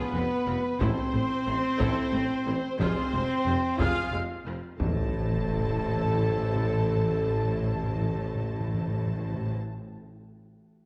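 Cinematic, epic orchestral film score in a relentless 6/8, cut from a longer piece, where an up-front mellow French horn section holds sustained chords beneath distant, lush violin sections carrying the melody and a second line, a hollow flute line above, viola accompaniment and a bass of tuba, cello and double bass sections, while hard-stick taiko drums in a large room play until 6.1 s and round, soft-mallet timpani arrive with the impact at 4.8 s, joined a moment later by a huge sub drop, set in a dark, wet scoring-stage reverb.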